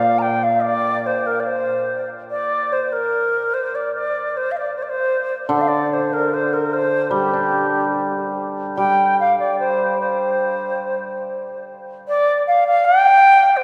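A low xiao, bright and reedy with vibrato, opens this graceful, tender fragment of Chinese traditional chamber music over a mellow, shimmering hammered dulcimer that drops out at 1.4 seconds and returns from 5.5 to 11.2 seconds, while the rubato melody carries on through a long, wet cathedral reverb.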